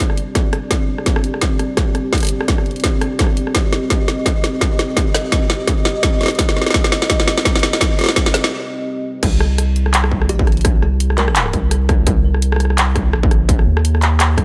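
Half-time drum and bass in C minor at 169 BPM, this dark, tense cut from a longer piece swings its sixteenths over a heavy half-time groove. A moody, detuned sawtooth pad holds sustained chords through the build-up, its slow attack and long release colored by chorus and pumped by sidechain, while the drum kit runs a fill from the start with a woody snare, bright hats, handclaps, rim clicks and crash. Beneath it, a distorted, overdriven electronic kick sits up front, and both drum parts carry the boxy feel of a small room. After a short break at 8.5 seconds, the drop lands at 9.2 seconds as the pad gives way to a deep, thick, saturated sine sub bass with a fast attack. A brief kalimba figure, plucked and hollow with a thumbnail pluck, flickers in the background with tape echo between 10.3 and 11.5 seconds. Light reverb lends the mix a little air while the low end stays close and heavy.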